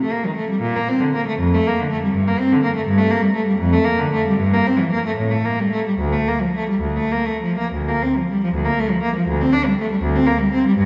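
A single bowed cello carries this grave, flowing classical piece, a baroque-style suite movement for unaccompanied cello in D minor. Its tone is rich and focused, with vibrato colouring the line as it ranges from D2 to D4. The pulse moves in 6/8 at roughly 61-85 BPM, counted in dotted quarters, and it gives and takes freely in a rubato feel. The cello sits up front yet sounds distant, as the listener hears it from further back in a church with a long, wet reverb that lingers around each phrase. The opening section runs to 7.7 s, where a new section begins and continues until the cut at 10.9 s, since this passage is taken from a longer piece.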